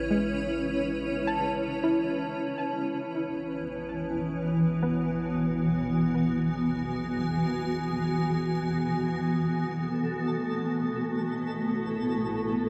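A cloudy, full-bodied granular pad sits up front in this luminous ambient excerpt in free time, holding blurred, slowly evolving sustained chords in a huge, dark reverb. Beneath it, a deep, ominous drone rumbles and warbles in the background, fading over the first 9.5 seconds, while a soft, round pluck traces chorused, tape-echoed arpeggios until 6.8 seconds. At 9.9 seconds a twinkling granular texture enters with a sparkling octave-up shimmer.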